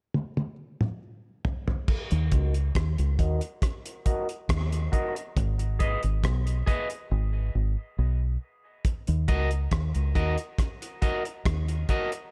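A close, small-room sound with a damped, padded feel gives this heavy, spacious dub reggae fragment its weight. It opens on a drum fill from a cloth-damped kit with a tight kick, rim clicks, toms, hi-hat and dark crash cymbal, its rolled-off top keeping it thuddy and up front. At 2.1 seconds a deep, round, foam-muted fingered electric bass arrives, punchy and direct, moving between Ebm and Abm. A picked, twangy electric guitar at the edge of break-up sits further back, run through a low-pass filter and dub echo, with a filter sweep shaping it through the middle stretch. A break at 7.1 seconds leads into the return to Ebm at 8.8 seconds, where the groove carries on until the cut.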